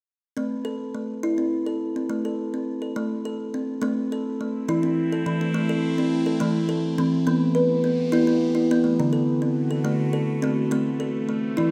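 World meditative music in a lilting 6/8, gentle and unhurried, taken from a longer piece. A kalimba opens at 0.4 seconds with thumb-plucked arpeggios, its woody, hollow-box tone ringing out up front in the mix. At 4.7 seconds a morphing wavetable pad enters alongside it with slow-attack sustained chords, its detuned sine-based sound bright through a phaser and its own reverb, sitting lower in level than the kalimba. The harmony rests on A minor before moving through E minor and D and returning to A minor near the close. A wet echo-chamber reverb with a long tail surrounds the performance, lending the calm, contemplative mood a spacious, resonant air.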